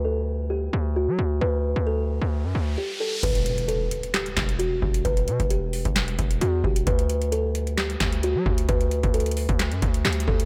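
A half-time hip hop and trap beat at 132 BPM in E minor, brooding and melancholic, gains a booming analog drum machine at 3.2 seconds: deep kick, crisp snare, metallic hats, handclaps and crash cymbal, up front with a short room on the snare, clap and hats. A distorted 808-style bass sounds heavy and saturated from the start, while a woody, hollow kalimba plays a soft melody through a low-pass filter and tape echo, with a filter sweep over its opening seconds. An electronic riser enters at 2.4 seconds and gives way to an impact as the drums arrive, all in a dreamy mix soaked in plate reverb over chords moving from D5 to Em and back to D5.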